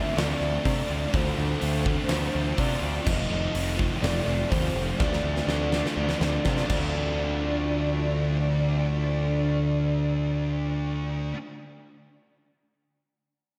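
This dreamy, melancholic shoegaze and dream pop rock passage moves in a straight 4/4, cut from a longer piece and soaked in a lush hall reverb. A thick fuzz guitar with distortion and ensemble chorus sits in the background beside a crunchy overdriven guitar whose riff carries a reverse reverb, while a growling, overdriven picked electric bass sits up front. A huge arena drum kit with a fat snare and punchy kick drives the opening, plays a fill from 5.0 seconds, and stops at 6.8 seconds as the music passes into its second section. Above the guitars floats a pure, round sine lead with chorus, vibrato and a diffuse ambient delay, carrying the melody. Underneath, a very quiet vintage string machine voiced as cellos holds mellow sustained chords, and a bright, twangy electric guitar through a small old amp picks faint arpeggios, over harmony that shifts between Dm7 and F7.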